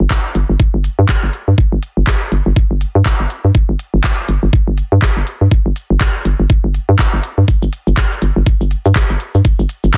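A dense, heavily limited modern master with little reverb frames this quirky, cool minimal techno cut, taken from a longer piece and running at 122 BPM in 4/4 with a 58% swing on the sixteenths. A hollow, bouncy FM bass sits up front from 0.0 seconds, moving between G1 and G2 with a fast attack, mellow decaying notes and sidechain pumping. From 0.1 seconds an overdriven, layered electronic kick knocks in the foreground. Alongside it, a minimal click kit of handclaps, shaker and clicky hi-hats comes across as if re-recorded in a large room, set a little lower in level than the kick and bass. The whole ten seconds stays in a single section, a tight, punchy groove built from these three parts.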